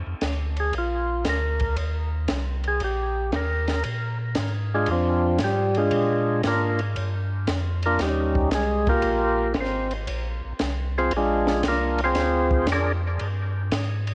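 Greasy and bluesy, this short cut from a longer soul jazz organ trio piece swings at 116 BPM in 4/4, sitting in Bb mixolydian with the tuning slightly flat of standard. A piping, scooped tonewheel organ holds down the bass line from the very start, running through a slow rotary speaker up front in the mix. A compact cocktail drum kit joins at 0.2 seconds with hi-hat, ride, a punchy kick, a high-tuned snare and dark cymbals, its dry acoustic sound coloured by cassette tape. From 0.6 seconds a second, percussive tonewheel organ takes the melody with a full, clean tone, second harmonic percussion and key click, turning slowly through its own rotary speaker with tape echo, and both organs share that clicky attack. The changes move from Bb to Eb and then settle into Bb9 and Eb9 over an organ solo, all wrapped in a small, lightly reverberant room with the homespun grain of a cassette recording.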